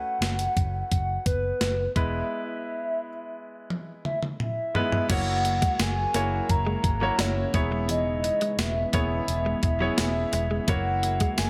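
A hollow, woody synth lead carries the melody in this romantic, uplifting slice of 1980s-style pop, its soft square-and-triangle tone colored by chorus and a gentle vibrato. It moves at 86 BPM in a straight 4/4 in F# mixolydian, over chords that shift between Aadd9/F#, E, F#7 and E6. A clear, polished baby grand piano plays the accompaniment, while a dark, round, foam-muted fingered bass sits low and punchy underneath. The clean 12-bit drum machine sits up front with a thumpy kick, a medium-tuned snare, hi-hat, tambourine, crash and toms, all bathed in gated reverb. A break arrives at 2.3 seconds, with a drum fill from 3.7 seconds leading into a second section at 5.1 seconds. There a very quiet, detuned sawtooth pad adds evolving, resonant sustained chords, and a compressed, picked electric guitar plays a riff in the background through analog chorus, all within a light reverb.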